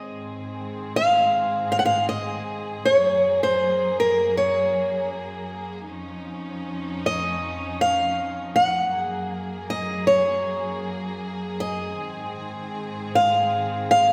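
Nostalgic and tender, this fragment of a longer acoustic folk-pop ballad moves at an unhurried 79 BPM in straight 4/4. A boxy, picked old ladder-braced acoustic guitar carries the melody up front, while a close, intimate studio string section sustains bowed sul tasto chords with soft attacks and light vibrato beneath it. The harmony moves from Ab through Gbadd9 and Dbadd9/F back to Ab, and it all sits in the moderate bloom of a scoring-stage reverb.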